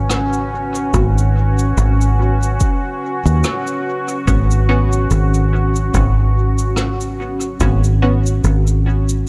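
Ambient dub at 72 BPM with a light 16th swing and a deep, meditative mood, built on a single Bsus2/G# chord, where a moody, detuned sawtooth pad with chorus and built-in reverb holds sustained chords, a muted, filter-plucked dub chord stab drifts through lush chorus and dub echo, a punchy, foam-muted fingered electric bass sits up front, distant rim click and cabasa with a rolled-off top carry dub echo, and an electronic kick enters in the background at 0.9 s and stops at 7.8 s, all in a dark small-room mix cut from a longer piece.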